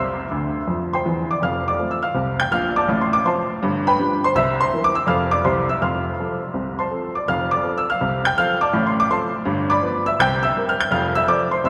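A clear, woody upright piano opens this playful stride-piano excerpt on its own, slipping in a brief fill at 0.3 seconds before settling into a swinging 164 BPM groove in F major that spans from its deep bass to its high treble. Its slightly detuned, short-sustained tone sits up front, while a long cathedral-like reverb trails behind it, lending the sound a church-hall glow. Across two matching passages, the harmony circles through F, G7 and C7 turnarounds, and the piece is cut off mid-stride at 11.7 seconds.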